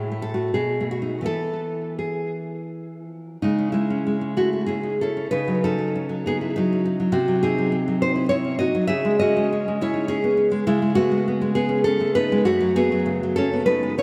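Romantic solo classical guitar in a rubato 3/4, warm and sunny in mood, cut from a longer piece. A fingerpicked nylon-string guitar with fresh strings sits up front, touched by delay, and drifts from a brief opening in E major into a shift toward C# minor at 3.4 seconds. The dreamy mix is soaked in a lush hall reverb with a two-second tail.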